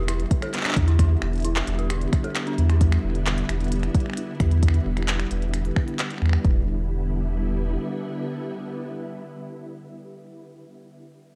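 A soft string machine, a dark detuned synth bell and a sub bass open this eerie, intricate IDM excerpt together on an Em7 chord, in E minor at 132 BPM in a straight 4/4, tuned slightly low to A4 = 438 Hz. The silky, warbling strings hold sustained chords with a slow attack, ensemble chorus and a vintage 12-bit sampler grit, while the FM bell spins inharmonic arpeggios through chorus, phaser and delay until it fades at 2.8 s. Underneath, the round, sine-shaped sub bass sits up front, deep and mellow. A glitchy kit of finger snaps, handclaps and clicky hats, washed in studio reverb and delay, enters first and is quickly followed by a deep, tape-warm electronic kick drum, and both drop out at 6.5 s. The bass carries on until 7.8 s, leaving the strings to float alone in a dark production with light reverb.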